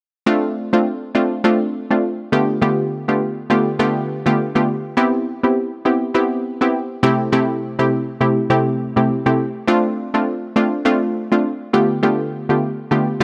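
A round, detuned analog pluck with chorus plays alone and up front from 0.3 s in this mellow, sultry afrobeats excerpt, its bright sawtooth edge and noise layer moving over swung sixteenths and a Dm7, G9/D, Cmaj7 and Am7/C progression in a light digital ambience.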